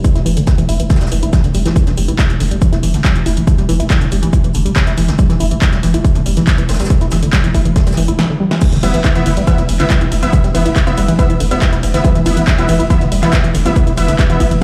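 Driving peak-time techno in E minor at 140 BPM, intense and industrial, this cut from a longer piece pairs a tight, nasal sawtooth synth riff with chorus, tube saturation, tape echo and sidechain pumping over a growling, buzzy 808-style bass, an overdriven electronic kick up front, a punchy, tape-warm analog drum machine with crash, ride, claps, hi-hat and snare, and a very quiet brush kit with hi-hat, shaker and snare, until a drum fill at 8.2 seconds leads into a drop at 8.6 seconds on an E5 chord, where an aggressive, thick, bright rave stab with a sub octave enters at 8.8 seconds, all set in a large, bare-room reverb as if played on a big sound system.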